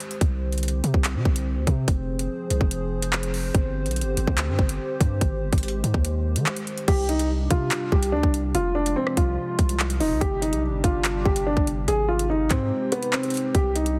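A dark, mellow concert grand piano takes the melody at 6.9 seconds, sitting up front with audible action noise and a digital delay, over a menacing, cold drill beat in C minor at 144 BPM with a half-time feel. The electronic drum kit pairs a hard-clipped kick with metallic hats, handclaps, rim clicks and crash cymbal, while a deep, sine-toned 808-style bass with a fast attack enters at 0.2 seconds and a detuned, ring-modulated analog pad with chorus holds slow-attack chords through Csus2, Fm, Gsus4 and Abmaj7. A brief break arrives at 12.7 seconds, and the whole piece carries light reverb and a heavily compressed, radio-like sound.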